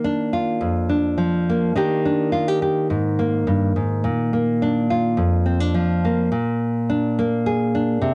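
Sunny and carefree, this short cut from a longer highlife piece moves at 105 BPM in 4/4 with a light sixteenth-note swing in B-flat mixolydian. A single fingerpicked nylon-string guitar carries everything as the solo voice, its deep classical tone sitting up front and softened by a cassette-tape character. Its chords move from B-flat through E-flat major seventh and A-flat sus2 before returning home, and a new section begins at 6.3 seconds, all in the light reverb and dulled top end of a home cassette recording.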